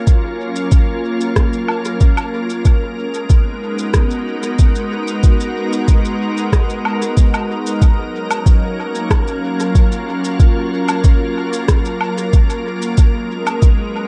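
A soft, up-front electronic kick anchors this deep, meditative ambient dub excerpt at 93 BPM, while a pure, detuned organ-like pad with ensemble chorus and its own reverb holds bright, sustained F#maj7 and G#m9 chords, and a quieter electronic shaker, rim click and woodblock trail dub echo through the dark, dry mix.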